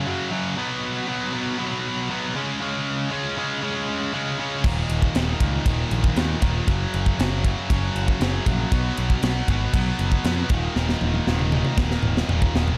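Heavy metal with a dark, heavy mood, cut from a longer piece and moving at a steady, straight pulse in four. A distorted, high-gain guitar opens alone with a riff built on power chords, its bright, double-tracked tone sitting up front in a dry, dark-leaning mix. At 4.6 seconds a growling picked electric bass joins, overdriven and amped, alongside a tight metal drum kit with bright cymbals, a high-tuned snare and a tight kick, played on crash, ride and toms. The kit carries an airy, big-room polish that contrasts with the otherwise close, reverb-light sound. A drum fill from 10.8 seconds drives the passage to its cut-off at 12.8 seconds.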